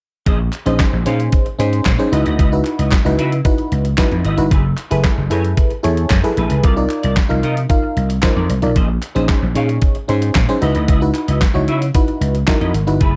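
Early-eighties boogie funk at 113 BPM in a straight 4/4, danceable and slick, where a growly, punchy slap bass and a thumpy, sampler-style detuned 8-bit drum machine sit up front with a glassy, bell-like FM electric piano on chorus, while a clean, hollow-body semi-hollow guitar picks a riff under an ensemble chorus, very quiet crisp group handclaps come in at 0.5 seconds, and the dark, dry production moves through Bbm11, Dbm11, Gbm11 and Cm11 chords.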